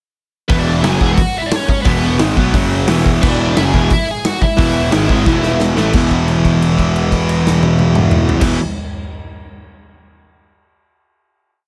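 A lightly reverberant recording carries this short, rebellious and upbeat punk rock piece, where a big, natural-sounding acoustic drum kit sits up front with a fast punk groove, a bright distorted guitar and a warm, hollow-body overdriven guitar in the background play power-chord riffs over a growly fuzz bass driving eighth notes that double the riff, and a high-gain lead guitar states a motif-based melody, partly doubled in octaves, until 5.6 s, before a drum fill leads into a final held chord from 5.9 s.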